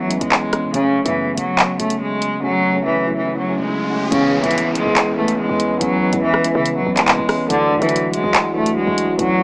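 A half-time drill groove at 142 BPM in C# phrygian drives this dark, menacing hip hop excerpt, with an up-front electronic kit of bright hats, handclaps and rim clicks under a rich, nasal bowed cello melody with light vibrato and delay, a mellow tine electric piano, a punchy, tight 808-style bass in the background, a riser and downlifter from 3.3 seconds, and a mellow French horn section holding sustained chords from 4.1 seconds, all heard with light reverb through a small-speaker sound.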